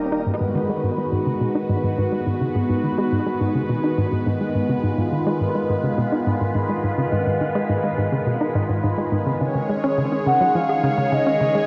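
A swirling, detuned sawtooth pad with phaser, chorus and shimmer reverb holds sustained chords over a bouncy, hollow square-wave pluck riff with tape echo in this hypnotic, expansive stretch of sequencer-driven ambient space music at 105 BPM in G# dorian, moving from G#m7 to C#sus2 at 9.4 s before a mellow, vibrato-laden portamento lead enters at 10.3 s, the whole piece captured as a cassette home recording in a wet spring reverb and cut from a longer work.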